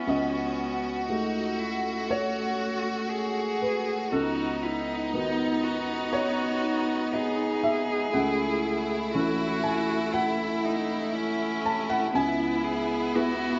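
A moderate, large studio reverb and a top end that stops at 7.6 kHz frame this fragile, reflective neoclassical excerpt for piano and strings, moving in a rubato 60 BPM in 4/4 with tuning set to A4 = 444 Hz. A felt-muted upright piano sits up front with a soft, intimate, mellow tone, while a clear, smooth violin section carries the melody with vibrato, plate reverb and tape echo, and a rich, focused cello adds a second line. A distant solo viola fills in the accompaniment with expressive portamento as the harmony moves from F#madd9/C# through B/C# and A6/C# to C#m7 across the 13.6 seconds.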